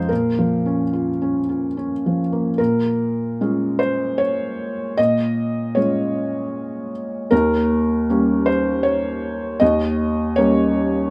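A soft, intimate felt-muted upright piano plays alone from the first moment in this wistful, reflective neoclassical minimalist piece. It moves in a rubato 3/4 at roughly 72-79 BPM in Bb minor, with chords shifting from Bbm to Bbm7 at 2.6 s and to Eb7 at 7.3 s. Its thin, vintage tone sits up front in light reverb across a span from Eb2 to Eb5 in this brief excerpt.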